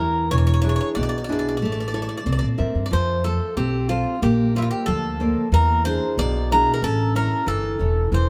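Heard from further back in the room, this short cut from a longer piece of Greek folk sits in a moderate plate reverb with a long, lingering tail. A Greek bouzouki band plays in 2/4 with a straight feel, and the mood is bittersweet and moody. The picked bouzouki carries the melody up front, its metallic double strings, some doubled at the octave, ringing between E4 and D5. A fingerpicked nylon-string guitar, full-bodied and deeply classical in tone with fresh strings, supplies the accompaniment, while a pizzicato upright bass on steel strings adds a woody, dark low end that sits a little louder than the other two. All three play throughout, and the harmony moves from E7 to A and C7 before a second passage begins at 2.9 seconds with F and Bbadd9, then returns to E7 and A.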